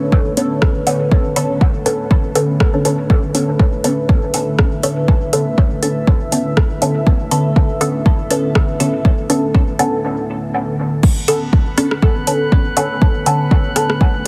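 Deep and hazy, this short cut from a longer dub techno piece rides a swung 4/4 groove. A moody pad holds sustained chords throughout, its detuned sawtooth tone wave-folded and ring-modulated, softened by chorus and reverb and pumping against the kick. Up front, a muted, nasal chord stab with a resonant filter pluck and moving notch sits on a Bm9 colour, washed in phaser and dub echo, and a filter sweep runs across it from 11.0 seconds after a brief break. The overdriven electronic kick stands forward and deep, while a layered house kit adds metallic hi-hats, rim clicks and crash cymbal, both re-recorded in a large room. At 11.4 seconds a calm, glassy texture of drifting overtones enters, bright and sustained under chorus and reverb. The whole mix carries a heavily compressed, radio-like sound with light digital ambience.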